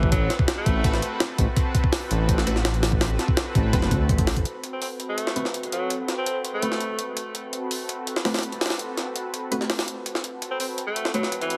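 A gritty, pitched-up jungle sampler-style kit with a thumpy kick and high-tuned snare drives this atmospheric, raw drum and bass cut at 166 BPM in A dorian, as a deep, rumbling detuned saw bass with tube saturation anchors the drop until 4.4 seconds, a lush, warbling unison pad with chorus sustains chords throughout, opening on Am69, bold orchestra-hit-like synth stabs with reverb and dub echo punctuate from 0.8 seconds, and a jazz-style tenor saxophone with light vibrato and scooped notes offers brief dub-echoed phrases, all under light digital ambience and a heavily compressed radio sound.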